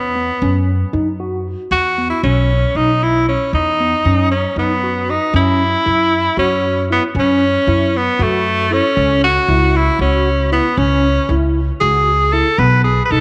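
This is a driving, intricate piece of progressive instrumental band music in 7/8, moving at 232 BPM counted in eighths with a straight feel, cut from a longer piece. A bright, forceful tenor saxophone carries the melody up front from the start, playing in a jazz style with vibrato, scooped notes, a punchy attack and a smooth top. Beneath it, the upright bass is plucked with a woody, thumpy tone from its steel strings, sitting prominently in the mix. A mellow tine electric piano joins at 0.2 seconds with clean arpeggios colored by analog chorus. The whole band sits in a wet spring reverb with a long tail. The harmony moves from E-based chords in the opening section to F#7, C#m and B after the second section begins at 5.3 seconds.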